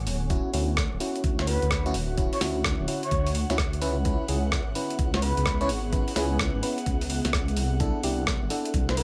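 A deep, rumbling detuned sawtooth bass sits up front in this sunny, bouncy two-step UK garage excerpt, its beating unison tone anchoring a swung sixteenth-note groove. A knocking, layered electronic kick and a gritty, compressed breakbeat kit of hi-hat, rim click and medium-tuned snare share a small-room ambience, with the kit entering at 0.1 s and the kick at 0.3 s. Glassy FM electric piano stabs with a bell-like attack and a warbling vintage chorus and delay arrive at 0.3 s, tracing chords that move from Dmaj9 to C#m7 to C69. At 1.4 s a soft, breathy flute-like synth lead carries the melody with vibrato, chorus and delay. Two pads fill the background: one holds sustained chords with a phaser and a noise layer, while the other adds an ethereal, mellow texture with ensemble chorus and its own reverb, both pumping with sidechain under a light overall reverb.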